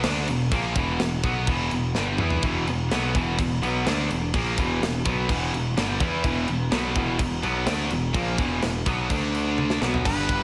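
Heavy metal in E minor at 126 BPM, relentless and heavy, where two bright, high-gain distorted guitars churn a riff in the background over a growly, up-front picked bass and a tight drum kit with a mid-forward, rolled-off top, crash, kick, snare and toms, which drops in fills at 2.0 and 9.6 seconds. A double-tracked, compressed fuzz guitar with slapback echo joins the riff at 2.4 seconds, and the harmony holds on Em before moving to D5 and B5 near the close. A high-gain lead guitar steps up front on a single B4 at 10.1 seconds, all set in a lush hall reverb that gives a big arena sound to this fragment of a longer piece.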